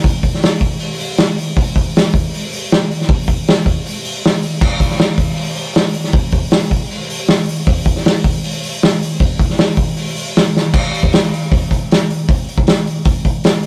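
Raw and gritty, this short rock excerpt cut from a longer piece runs at 157 BPM in a straight 4/4 feel, carried entirely by a vintage acoustic drum kit that plays from start to finish. The kit sits up front, with a punchy kick, a medium-tuned snare, hi-hat and crash cymbal, and its dark cymbals and rolled-off top give it a warm character. A moderate small-room reverb lends the drums a pumping room sound, and the whole take has the rough, unpolished quality of a rehearsal-room recording. A drum fill at 10.6 seconds leads into a new section at 10.7 seconds, which carries on until the clip ends at 13.7 seconds.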